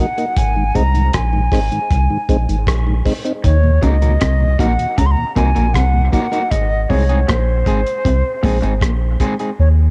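Spacious and hypnotic, this dub reggae excerpt at 78 BPM in 4/4 opens with an airy, tongued concert flute singing an unsteady vibrato melody over a round tonewheel organ with key click and slow rotary speaker, both soaked in dub echo, while a cloth-damped, thuddy drum kit with tight kick, hi-hat and rim click and a deep, soft sub bass sit up front. At 3.4 s, as the harmony moves from Ab to Ebm, a picked, lo-fi electric guitar through a small old amp adds a tremolo riff in the background, and at 3.8 s a fingered, slightly broken-up guitar joins the accompaniment; the organ drops out at 6.4 s as the chords return to Ab. Cassette tape coloring and small room reverb give the whole home recording a hazy, intimate character.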